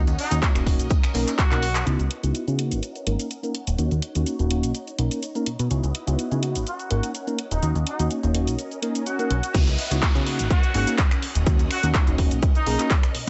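A lightly swung 4/4 groove at 125 BPM drives this filtered disco house excerpt in C# dorian, its mood nostalgic and sensual as the chords cycle through D#m7, Bmaj9, C#m11 and G#9sus4. The house drum kit layers hi-hat, shaker, finger snaps, handclaps and crash cymbal with overdrive and a large-room character, its hats, percussion and cymbals pumping to the sidechain, while a very quiet tambourine adds a small-room acoustic shimmer. A punchy, overdriven electronic kick sits up front, drops away as a drum fill and band accent arrive early on, and returns for the drop at 9.5 seconds. Underneath, a funky sawtooth-and-square analog bass plucks with a fast attack, decaying notes and a moving notch, while a bell-like, clean tine electric piano comps through a phaser and a swirling string machine holds slow-attack chords with ensemble chorus, all three pumping beneath a low-pass filter. A clear horn section with light vibrato carries the melody through vintage 12-bit sampler grit and delay, falling silent at 1.9 seconds and returning at 6.7 seconds, and an electronic swell rising at 8.8 seconds gives way to a downlifter in the background. 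The mix is dry and dark at the top end, with the filtering lending the whole groove a muffled haze.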